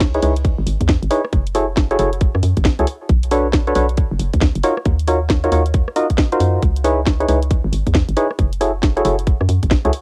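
Two-step UK garage with a skippy, late-night swing, built on a hollow, bouncy FM bass, a tight, up-front electronic kick and a tape-saturated garage kit of warm hats, rim clicks and a cracking snare, while a dark, percussive organ stab, thickened by chorus and tape echo on cassette, moves through lush minor-ninth chords in this short excerpt cut from a longer track.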